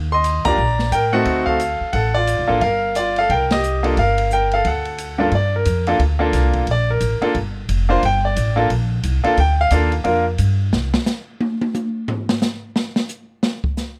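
Jazz piano trio in G minor, swinging at a brisk 178 BPM with a smoky, late-night mood, cut from a longer piece. Woody, thumpy pizzicato upright bass on gut strings and a bright, brilliant grand piano sit up front, with the group hitting accents at 0.4 and 3.5 seconds before the piano takes a solo at 5.3 seconds over light reverb. An acoustic drum kit with dark cymbals and a boomy kick plays throughout, then carries on in a short drum solo from 10.7 seconds to the end.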